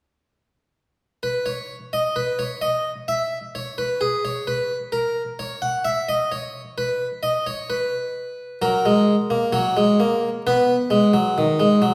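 A round, full-bodied French-style harpsichord on a single set of strings plays alone from 1.2 to 11.9 seconds in this joyful, elegant fragment of a baroque-style two-part invention in B major at a stately 65 BPM in 4/4, its plucked tone set in a reverberant recital hall as the harmony settles from F# onto B.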